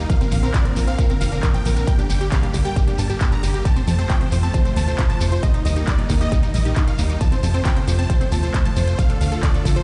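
A straight 4/4 pulse at 135 BPM drives this euphoric, emotional uplifting trance excerpt. A punchy, up-front electronic kick and a dark, detuned sequencer bass anchor the groove beneath a big-room kit of handclaps and metallic hi-hats and a grainy shekere in the background, with the bass pumping to the sidechain. Huge, bright supersaw chords carry the melody with tape echo over an airy slow-attack supersaw pad, a mellow unison pluck playing a second line and a very quiet, wave-folded pluck arpeggio with a moving notch. The parts cycle through Bbadd9, Gm, F, Eb, F and Dm in a big, bare room sound with a dull top end.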